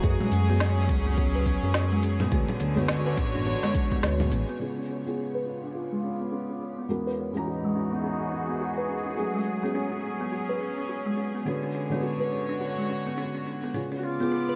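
Organic downtempo with an earthy, warm mood, swung gently in four. A felt-muted upright piano, soft and dark with audible action noise, carries the accompaniment throughout, pumping against the beat and trailing tape echo into a shimmer reverb. A rich chamber string section holds bowed chords with light vibrato, and a woody, airy kalimba plucks arpeggios, both filtered and then put through a filter sweep from 4.6 seconds. For the first stretch, a deep, layered electronic kick, a smooth sawtooth-and-square synth bass and an overdriven kit of woody snare, crisp hats, congas and shaker drive the groove, joined by a distant, very quiet djembe with metal rattles. Once the beat drops away, the piano, strings and kalimba float on until a mellow, scooped duduk appears up front at 14.0 seconds just before the cut.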